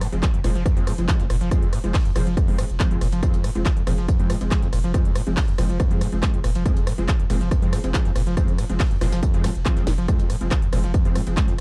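Driving peak-time techno in F minor at 140 BPM, this short, dark and industrial passage cut from a longer piece holds a single F minor chord across its length. An up-front, heavy electronic kick anchors the groove, joined by a tape-touched techno kit of cracking snare, smooth hats, ride, handclaps and rim clicks, its hats and cymbals pumping with sidechain. A gritty, overdriven breakbeat sampler kit of hi-hat, snare and tambourine sits very quietly beneath, and a drum fill arrives at 9.9 seconds. A deep, thick sine sub bass holds F1 with saturated overdrive, a low-pass filter and sidechain pumping, while a screaming, squelchy sawtooth acid riff with a resonant filter sweep and distortion runs in the background between F2 and F3. Aggressive, detuned unison rave stabs with a filter pluck, chorus, delay and built-in reverb punch between F3 and C4. The production is dark and warm, with little reverb.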